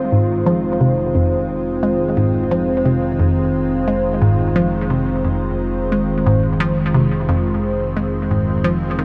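A huge ambient reverb with a long 8.8-second tail surrounds this brief excerpt of hypnotic, expansive space music, a sequencer-driven piece in F minor moving at 88 BPM in a straight 4/4. An evolving wavetable pad sits up front, holding sustained chords on Fm7 with a slow attack, long release and morphing, detuned unison tones treated with chorus and its own reverb. Beneath it a hollow square pluck repeats a bouncy riff in the low-to-middle register, its fast attack and short decay shaped by a moving notch filter and softened by chorus and analog delay into a mellow, detuned tone. A fat analog bass anchors the low end on F1, thick and sustained, with a filter sweep running through its sawtooth and square wave blend, mixed lower than the other parts. All three parts play throughout the 9 seconds, holding a single chord for a steady, trance-like stillness.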